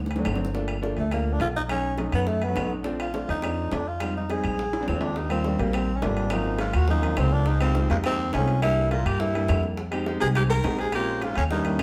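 Afro-Cuban jazz at a brisk 208 BPM with a sunny, danceable mood, this clip opens with a drum fill as woody pizzicato upright bass, round low-tuned bongos, ringing metal-shell timbales, distant claves and a clear concert grand piano set the groove, a raspy, growling tenor saxophone takes the lead at 1.0 seconds bathed in plate reverb, and a clear baritone saxophone with vibrato and scooped notes joins in the background at 4.9 seconds, shortly before the key moves from Bb major to Eb major, all heard from further back in a moderately reverberant room.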